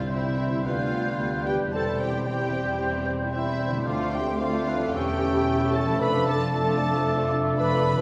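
A dark, woody violin section carries the melody up close with vibrato in this cheerful, graceful fragment of a fast, dramatic romantic orchestral movement in C major at 112 BPM, played with rubato in 4/4 over a progression from C through G7/D, Dm7 and A7/E to Dm/F. Mellow flutes, a distant oboe, a very quiet clear clarinet entering at 0.1 seconds and a second violin section weave second lines, while a roomy bassoon, a rich viola section and tight French horns holding sustained chords fill the middle. Bright, ringing harp arpeggios and lush bowed cellos and double basses lie beneath, all set in the reverb of a recital hall.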